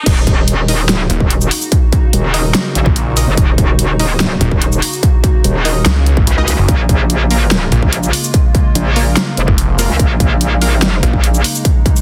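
Half-time 4/4 at 145 BPM drives this heavy, aggressive wobble dubstep drop in Eb minor, where a distorted, up-front electronic kick and a dubstep kit with a huge snare, bright hats, shaker and crash pound together with a metallic, chorused FM wobble bass and a snarling, detuned saw bass that growls in from 1.1 seconds, while a morphing, warbling wavetable pad with vintage 12-bit grit and sidechain pumping sits in the background alongside very quiet, punchy orchestra-hit-like stabs, all over Ebm7 moving to Bbm7 at 6.7 seconds in a dense, heavily limited mix.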